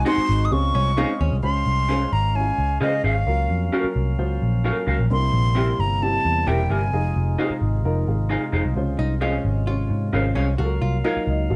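Uplifting, danceable soul cut from a longer piece, where a breathy, close-miked flute carries the melody with plate reverb until 7.4 seconds over a round, foam-muted electric bass up front, a lightly overdriven tonewheel organ holding sustained chords with key click, a woody, slightly detuned upright piano that adds a fill at 11.0 seconds, lo-fi guitar stabs from a small old amp with subtle chorus, and a clean hollow-body archtop riff that returns at 9.0 seconds, all within a dark production.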